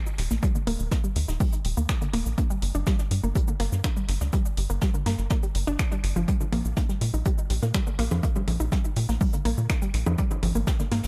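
An analog pluck opens this dark, hypnotic melodic techno excerpt in G phrygian at 123 BPM, its detuned, bright arpeggios carried by chorus, tape echo, sidechain pumping and a filter sweep over chords moving from Eb through G5 and Bbsus4 to Ab5. A punchy, overdriven electronic kick and a tight, sawtooth sequencer bass sit up front, while an overdriven deep house kit of congas, finger snaps, hi-hat and shaker pumps and echoes around them. In the background, a brushed acoustic kit adds natural, high-passed hi-hat and snare, all within a small, echo-heavy room.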